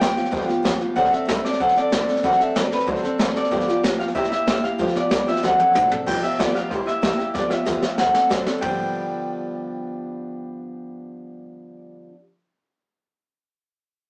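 A twangy, slightly broken-up electric guitar through a small old amp carries the melody in this upbeat, rollicking rockabilly excerpt, backed by a bright, full-bodied picked acoustic guitar up front, a woody, thumpy pizzicato upright bass sitting in the background, and a brushed drum kit with a boomy kick that drops out at 8.7 seconds after fills, all heard in a rough rehearsal-room recording with a small, wet reverb.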